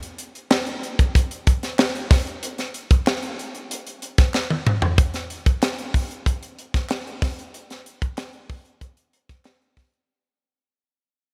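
A straight 4/4 pop groove at 94 BPM, bittersweet and urban in mood, is carried by an up-front, tight funk drum kit of hi-hat, tight kick, high-tuned snare and toms in a small room with light reverb, joined at 0.5 seconds by a very quiet, crisp, vintage-sounding group handclap, with a drum fill at 4.3 seconds before the piece fades out from 5.0 seconds.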